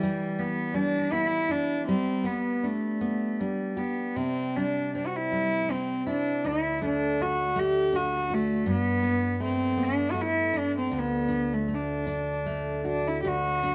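A rubato 3/4 pulse around 80 BPM carries this pastoral, wistful Celtic slow air in D mixolydian, tuned to A4 = 435 Hz and cut from a longer piece. Up front, a single bowed cello sings the melody sul tasto with a soft attack and a pure, floating tone, while a full-bodied, fingerpicked nylon-string guitar with a deep classical character accompanies through Em, G, C, D and Gadd9. Close, detailed microphones and light reverb give the pair a warm, detailed sound.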